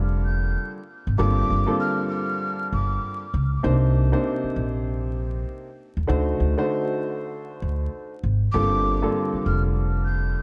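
A breathy, hollow jazz flute with vibrato carries the high melody through a delay from 0.2 seconds and returns at 8.5 seconds, over a mellow, vintage-toned concert grand piano run through cassette tape and a thumpy, woody pizzicato upright bass sitting up front, in this reflective, dark hip hop excerpt at 98 BPM in G minor with a swung sixteenth feel, moving from Gm11 through Cm9 and D7b9 back to Gm11 in a dreamy mix soaked in plate reverb and vinyl crackle.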